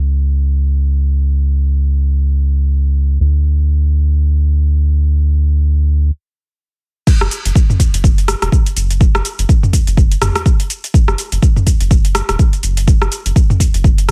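A round, nasal analog bass opens this driving afro house excerpt at 124 BPM, dark and up front with tube saturation and sidechain pumping, playing alone over a 16th-note swing and tuned slightly low to A4 = 438 Hz. After a stop at 6.1 seconds, the drop lands at 7.1 seconds as a deep, forward electronic kick arrives with a layered deep house kit of metallic hats, crash, rim click, shaker and toms. The dry mix keeps the warm groove close.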